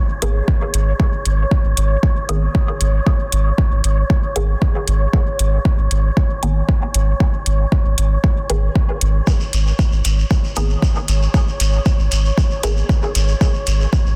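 Dub techno at 116 BPM in a straight 4/4, this deep, nocturnal excerpt sets an up-front kick drum and metallic hi-hats, both overdriven and re-recorded in a large room, alongside a round sine sub bass, muted and detuned sawtooth chord stabs with ring modulation, phaser and dub echo, and a dark, breathy wind-like noise texture held in its own reverb, with the bass, stabs and texture all pumping to the sidechain inside a dense, heavily limited master, while a grainy, distant shekere joins at 9.3 s.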